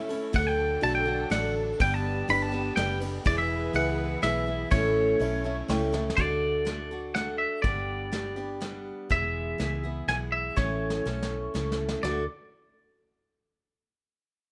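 A rough home-demo mix with light reverb carries this nostalgic, down-home honky-tonk and classic country excerpt in 3/4 at 123 BPM in D major, where a bright, twangy, compressed electric guitar plays the melody up front over a full-bodied picked acoustic guitar with finger squeak, a round, foam-muted vintage bass and a distant brush drum kit with a tight kick, while a dark, woody upright piano and a soft-attack bowed string section with light vibrato sit beneath until about 6 seconds, the piano adding a fill from 5.2 seconds before it drops out.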